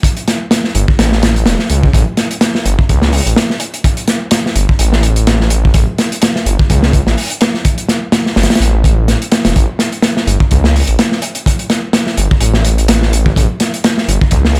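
A crunchy breakbeat drum kit, dark and gritty with a punchy kick, medium-tuned snare and hi-hat, drives this funky, playful breakbeat excerpt in A mixolydian at 126 BPM with a 56% swing on the sixteenths, joined at 0.8 seconds by a thick, menacing detuned saw bass with beating tones and tube saturation, both sitting up front in a dry mix.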